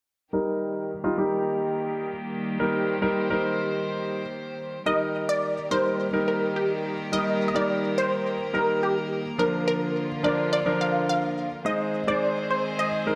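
A straight 4/4 pulse at 106 BPM carries this carefree, summery pop piece in Eb major, cut from a longer work. A clear concert grand piano with audible action noise and a reedy, gut-string chamber section hold the accompaniment from 0.3 s, both low-pass filtered, as a filter sweep runs through the opening. At 4.9 s a punchy, detuned sawtooth pluck takes the melody with digital delay over chords moving from Eb to Bb and Ab, all set in a moderate hall reverb.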